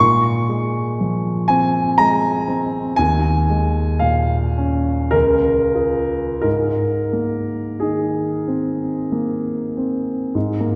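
A church reverb with a long 2.5-second tail wraps this recording in a soft, hazy glow, and the top end is gently rounded off. Within that space, a single concert grand piano sits up front, with a deep bass, an open tone and a long sustain that lets each chord hang in the air. This fragment of a longer impressionist classical piece moves in an unhurried, dreamy triple metre, with rubato that lets the pulse stretch and breathe. The harmony drifts from Bbm9 to Eb11 at 3.0 seconds, then settles through Db toward a luminous Abadd9, while the piano spans from low Db2 up to Db6. The piano plays alone for the full 10.8 seconds, leaving a reflective, floating impression.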